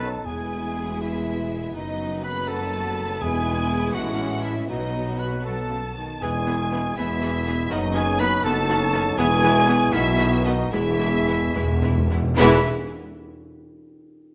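A lush, focused violin section carries the melody through this restless, urgent romantic orchestral excerpt in 6/8 and E major at 72-84 dotted-quarter beats per minute, with a punchy clarinet, a pure, distant silver flute and a second, close violin section adding lines, while warm French horns and very quiet vintage-toned trombones hold chords, faint intense violas accompany, a dark tuba, distant cellos and expressive double basses anchor the bass, and round, dry calf-head timpani on soft mallets play a fill from 10.7 to 12.4 seconds as the rubato slows from 8.4 seconds, all in a moderate recital hall reverb.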